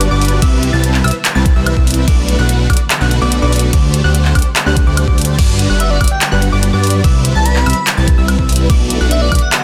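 A fat, detuned analog bass sits up front in this lush, euphoric future bass excerpt, pumping with sidechain under a half-time feel at 145 BPM in 4/4, tuned slightly flat to A4 = 437 Hz. Above it, huge detuned supersaw chords carry the riff with ensemble chorus, cassette tape colour, delay and the same pumping, moving through Cmaj7, Bm7, D7sus4 and Gmaj7. A punchy unison pluck spins high arpeggios in the background through tape and delay, while a very quiet, warbling vintage pad holds ethereal sustained chords with its own built-in reverb. The overdriven dubstep kit brings crash cymbal, handclaps, hi-hat and woodblock, and a knocking electronic kick joins at 0.4 seconds. At 5.8 seconds a soft, dreamy sine lead with chorus, vibrato and delay enters with a bright melody, all within light reverb and a dense, heavily limited modern master.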